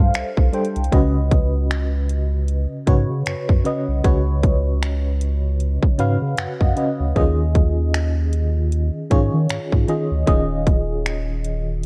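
An FM electric piano with tremolo and phaser opens this contemporary R&B excerpt at 77 BPM in 4/4, carrying a noise layer over a round, sine-like sub bass that sits deep and up front. The mood is longing and sensual, with a 16th-note swing giving the groove a loose, unhurried lilt. At 0.1 seconds an electronic trap kit joins with finger snaps, metallic hi-hats and a hard-clipped kick, all placed close and forward. The electric piano moves through G9sus4 and Db9sus4 chords, slips in a fill from 6.0 to 7.2 seconds, and then settles onto Eb9sus4. The recording is dry, with little reverb, and is colored by worn, warbling cassette tape whose pitch drift lends a hazy, aged character.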